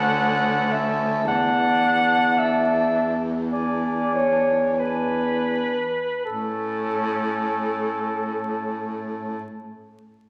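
Classical and lyrical, this brief fragment of a longer work for single-reed quartet has a warm, serene mood, moving in a rubato 4/4 that slows down through its first 6.3 seconds. The clarinet carries the melody high in its range with a soft attack and a warm, smooth top. Up front, the alto saxophone sings a warm second line with vibrato. The tenor saxophone sits in the background with clear, vibrato-touched accompaniment, while the close-miked baritone saxophone supplies a present bass line, also with vibrato. The harmony moves from Dmaj7 to E7sus4 before settling on A at 6.3 seconds, all of it bathed in the lingering reverb of a recital hall and a layer of vinyl crackle.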